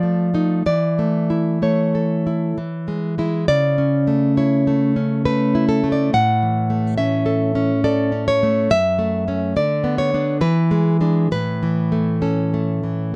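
A fingerpicked nylon-string guitar sits up front in this tender, romantic classical solo, its fresh strings sounding warm within a dark, warm production with light reverb and the occasional finger squeak. Played in an unhurried 3/4 with a free, rubato feel, the 13.2-second passage, cut from a longer piece, opens on F7 and moves through A/E, F#m and Bm/D to an E7 that settles on A at 11.3 seconds.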